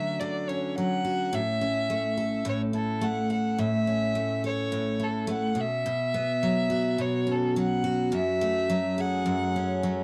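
Violin and picked steel-string acoustic guitar begin together at 0.0 seconds, with both placed up front in this wistful, reflective pop passage cut from a longer piece. The tempo sits at 106 BPM in 4/4, with a 60% swing on the sixteenths that lends a gently lilting feel, and the tuning rests slightly above standard at A4 = 441 Hz. The dreadnought guitar carries the accompaniment with a bright tone from fresh strings, moving through Dmaj7, A, Bsus2 and F#madd9 across the ten-second span. Above it, a single bowed violin sings the melody with a warm, even sound, its vibrato and smooth top keeping the line silky. The recording has a dry, close 1970s studio character touched by light reverb.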